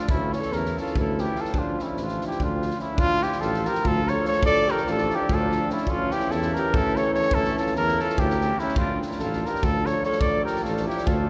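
Bathed in a cathedral-like reverb with a long decay, this short cut from a fiery, virtuosic Balkan brass band piece moves in 7/8 at 291 BPM (eighths) in D harmonic minor, tuned slightly low, with harmony shifting between Aadd11/D and Dm. A punchy cornet with light vibrato carries the melody up front, while a distant, roomy alto saxophone traces a second line in the background. A very quiet, soft-attacked trombone and a mellow euphonium supply accompaniment, a dark, smooth-topped tuba holds the bass, and an acoustic drum kit with a punchy kick and medium-tuned snare drives the odd-metre groove throughout.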